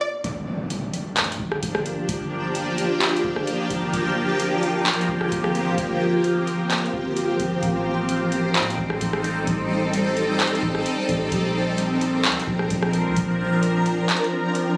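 This excerpt of atmospheric cloud-rap opens at 0.2 seconds with an electronic impact sound, a soft 808-style bass and a booming analog drum machine entering together. Set at 130 BPM in a half-time 4/4 feel in G minor, the mood is melancholic and ethereal. The drums sit up front, dry and tape-flavoured, with a deep kick, metallic hi-hats, handclaps and rim clicks, while the round, sine-toned bass gives dark, decaying low notes with a fast attack. From 1.1 seconds a shimmering ambient pad of detuned unison voices swells in on a slow attack, bright and granular with an octave-up sparkle, carried by chorus, phaser, built-in reverb and sidechain pumping. The chords move from Gm7 to Am7b5 and then Bbadd9, and the kick drops out from 14.1 seconds as the pad rings on. The sound has a light reverb and the roomy character of a phone recording made in the room.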